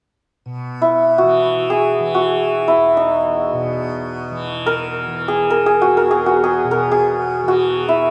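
A bright, buzzing tanpura drone, softly plucked, opens at 0.5 s before an up-front, hammered santur enters at 0.8 s with a ringing, shimmering melody in raga Yaman on E, unfolding in free time through the long church reverb of a devotional, serene Indian classical passage cut from a longer piece.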